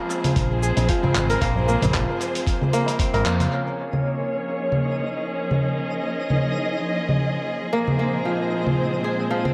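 This earthy, hypnotic organic downtempo piece is cut from a longer work. It opens on rich, bowed chamber strings holding vibrato chords beside a bright, crisp fingerpicked kora, its ringing arpeggios trailing dub echo. Both sit up front, and the strings pump against a sidechain through a low-pass filter. A dusty, sampler-style soul kit follows at once with cabasa, congas, handclaps and hi-hat, gritty and tape-warm through analog delay, while a high-tuned, band-limited tabla rings faintly in the background. At 0.4 seconds a thumpy electronic kick and a dark, round fretless bass with a woody, hollow-body tone join the groove; the kick drops away at 3.1 seconds and the bass follows shortly after a band accent, also pumping with sidechain. From 3.5 seconds a filter sweep moves across the strings as the harmony moves from Fm to Bbm7 and then Fm/Bb, and at 3.9 seconds a twinkling granular texture drifts in quietly, with sparkling octave-up shimmer and a slow attack. 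A wet spring reverb and heavy echo bathe the lightly swung mix.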